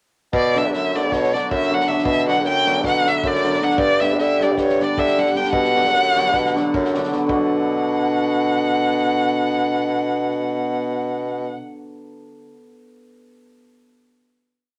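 This short, complete piece in Balkan wedding band style opens at 0.3 s with bassoon and drum kit together, the violin and hammered dulcimer joining within a fraction of a second, and it races along at 309 BPM in eighths in 9/8 metre in B minor with a virtuosic, fiery mood. The violin carries the melody up front, a rich, boxy bowed line full of vibrato and portamento, built from expressive song-like motifs. Beneath it the bassoon sounds clear and present, playing classical-style root and fifth bass on the main beats with light vibrato. The hammered dulcimer fills in shimmering, ringing triad chords off the beat, while the dry, tight drum kit, with its medium-tuned snare and rolled-off top, drives a two-stick pattern until it stops at 7.5 s. The harmony moves from B minor to G and back, and the piece closes on a final chord from 7.3 s, the dulcimer ringing on to 12.5 s in a moderate club reverb.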